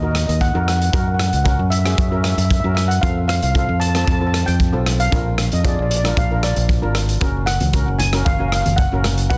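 A round, punchy fingered electric bass sits up front in this cool, bittersweet calypso excerpt at 115 BPM. A shimmering, mellow double-seconds steel pan melody with tape echo floats over a second metallic pan part. A gritty, saturated garage drum kit with soft clipping on the snare drives the groove through Ebm, Gb, F and Bb7 chords, and low-tuned congas join in the background at 7.6 seconds, all in a dry, dense, heavily limited mix.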